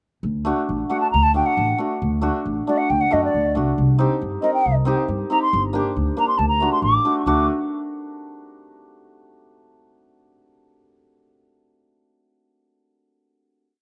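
A woody pizzicato upright bass opens this short, bittersweet klezmer piece at 0.2 s, playing root and fifth on the main beats at a lively 137 BPM in 2/4, with a shimmering hammered dulcimer joining at 0.4 s with off-beat triad chords carrying a slapback echo. At 0.9 s a pure, hollow concert flute takes the soulful modal melody in D phrygian dominant, ornamented and sung with vibrato and a crisp attack, its own slapback echo lending a distant air. The harmony moves from D through Cm and Gm back to D for a final chord, all captured dry outdoors.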